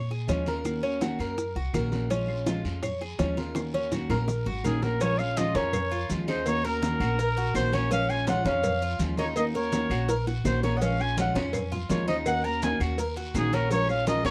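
A warm, vibrato-laden trumpet takes the solo melody up front from 4.7 seconds, punchy yet roomy, over a sultry Cuban son and guajira groove at 166 BPM in Bb minor that sways between Bbm7 and Ebm7 in this short excerpt. Metallic double-stringed tres arpeggios, a woody, thumpy gut-string upright bass playing pizzicato, and a fingerpicked steel-string acoustic guitar with old strings carry the harmony from the start, joined by a dark, thumb-plucked nylon-string guitar on a second line. Background percussion of bright, low-tuned congas, round soft-handed bongos and cowbell, woody claves, raspy distant guiro and grainy maracas fills in with drum fills at 3.6 and 10.1 seconds, all set in a dry, close 1970s-style studio sound with light reverb.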